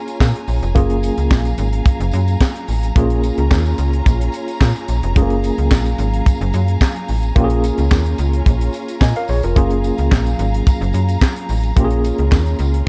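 Early-eighties boogie funk in F# major at 109 BPM, this feel-good, danceable passage is cut from a longer piece and runs about 12.9 seconds over a straight 4/4 groove. A tight funk drum kit sits up front with a dry, acoustic sound, a high-tuned snare, a tight kick, hi-hat and handclaps, while a jingly tambourine, compressed and saturated, rides in the background. The slap-like FM bass is equally forward, snappy and digital with a metallic, fast attack that then decays, ranging from E#1 to A#2. A worn, slightly out-of-tune tine electric piano plays clean accompaniment through a combo amp with a fast tremolo, as a lush studio string section holds smooth, bowed chords with vibrato. The harmony alternates between A#m7 and F#maj9, and the whole passage is wrapped in small room ambience with a dark, warm production.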